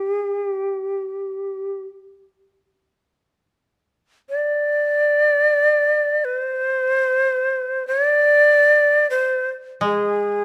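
Close, detailed microphones and a light reverb frame this calm, austere passage of traditional Japanese chamber music in free time, tuned to A4 = 436 Hz and cut from a longer piece. An up-front bamboo shakuhachi carries the melody for the full 10.4 seconds between G4 and D5, its breathy, bright tone marked by vibrato, a crisp attack and a distinct chiff. At 9.8 seconds a fingerpicked koto enters quietly on a low Ab3, sounding dry and woody.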